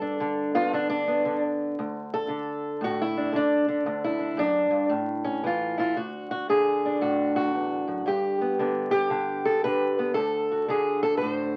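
A fingerpicked, ladder-braced acoustic guitar sits up front and carries this short piece of acoustic country blues entirely on its own, from the opening at 0.0 s to the cut at 11.6 s. Its tone is dark, woody and boxy, with the dull bite of old strings, and it ranges from D2 up to C5. The mood is soulful and gritty, with a swung eighth-note feel in 4/4. The first passage moves from G to D and then to A, and the guitar takes a steel-string solo there before the second passage begins at 6.0 s and cycles through D, G and back to D. A moderate studio reverb adds a little space around the guitar, while the sound carries the crackle of a very old 78 rpm record. The clip is cut from a longer performance.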